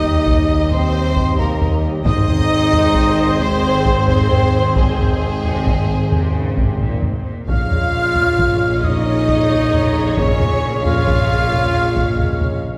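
Triumphant and heroic, this cinematic orchestral passage in a rolling 12/8 is cut from a longer piece and moves from Eb to Ab, then to Bbm7 at 7.5 seconds. A focused, close violin section carries the lush bowed melody. A bright, airy silver flute sings a second line high above it, and a very quiet second violin section with a smooth top doubles that role. Expressive violas add accompaniment with portamento. Dark, distant French horns and tight, very quiet trombones hold sustained chords. Underneath, an intense but very quiet cello section, rich and even double basses, and a tuba sitting in the background form the bass, while a taiko ensemble struck with heavy sticks drives from close up, all set in a wet scoring-stage reverb heard from further back in the room.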